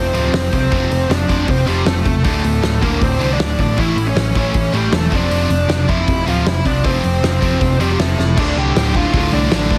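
A bluesy overdriven lead guitar sits up front in this urgent, angry punk rock excerpt, carrying the melody with a warm tone. Behind it, three picked electric guitars play the riff: a bright, double-tracked high-gain part, a sludgy overdriven one and a tight distorted one. They sit over a growly, punchy overdriven bass and a loose, roomy acoustic drum kit with dark cymbals, a fat snare and a tight kick, and a drum fill at 8.2 seconds leads into a new section at 8.4 seconds, all under light reverb and a heavily compressed, radio-like sound.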